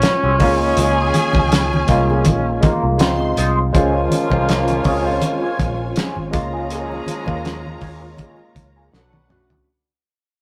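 Warm and romantic, this lush 1970s-style soul excerpt in Db major moves at 81 BPM with a gentle 16th-note swing. A breathy, whispered tenor saxophone sings the melody until 3.0 seconds over a worn, slightly out-of-tune tine electric piano, a dark wah guitar riff through a small old amp, a fat-snared, cloth-damped drum kit, a round foam-muted bass, soft low-tuned congas and a smooth bowed string line. At 3.7 seconds, a clear, vintage horn section adds octave-doubled stabs as the harmony shifts from Dbmaj9 to Bbm7 and the rough rehearsal-room recording begins to fade out, with a drum fill at 8.9 seconds.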